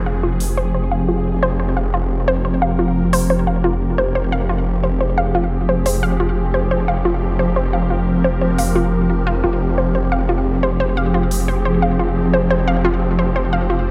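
Dark technical drum and bass at 176 BPM in F minor, tense and mechanical, built on a single Fmadd9 chord, with a snarling, overdriven saw bass growling on F1 beneath a swarming, warbling drone of sustained chords and bright, wave-folded unison pluck arpeggios carrying delay and a filter sweep, while crisp electronic hi-hats tick sparsely, a downlifter sinks in the background until 1.3 seconds, and a lush hall reverb surrounds this excerpt from a longer piece.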